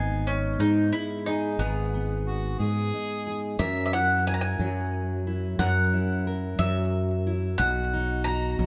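A bright, double-strung bowl-back mandolin carries the melody up front with plate reverb and tape echo over a full-bodied fingerpicked jumbo steel-string guitar and a dark, round fretless electric bass in this peaceful, nostalgic acoustic folk fragment at 60 BPM in a straight 6/8, moving from G#m to F#7 at 3.6 seconds and landing on B, while a distant harmonica with vibrato adds a brief second line between 2.3 and 3.6 seconds in a moderate large studio room.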